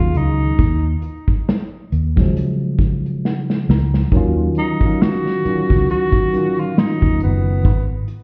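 Smooth and late-night, this short excerpt from a longer R&B and neo-soul piece moves at a slow 68 BPM in Eb minor with a swung sixteenth-note feel, its chords shifting from Ebm11 to Ebm9 at 4.1 seconds and reaching Abm near the close. A breathy, whispered tenor saxophone carries the melody with vibrato, scooped notes and tape echo, over a worn, slightly out-of-tune tine electric piano that is lightly overdriven and adds a fill from 2.8 seconds. A dark, foam-muted, round electric bass and an acoustic small-room drum kit of hi-hat, tight kick and medium-tuned snare played with bundle sticks anchor the groove, the drums fill just before the second phrase, and the whole mix sounds muffled through a wall with stone-room reverb.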